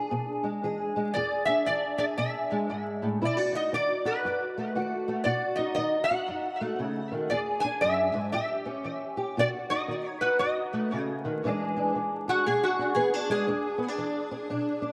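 The fingerpicked old ladder-braced acoustic guitar opens at 0.0 s with a dark, woody, boxy tone from its old strings, laying down an accompaniment that sits up front under an ensemble chorus. At 1.1 s the metal-body resonator slide guitar takes the melody, bright, metallic and nasal, played with fingerpicks and a slide, also up front and treated with chorus and delay. This is acoustic country blues with a swaggering, laid-back mood, moving at 117 BPM in 4/4 with a swung eighth-note feel over a progression of E7, B7 and A7 chords. From 11.4 s the resonator guitar steps out for a solo played with a steel bar as the music shifts into a new section. The whole short excerpt, cut from a longer piece, floats in a dreamy mix soaked in wet plate reverb, with vinyl crackle adding an aged patina.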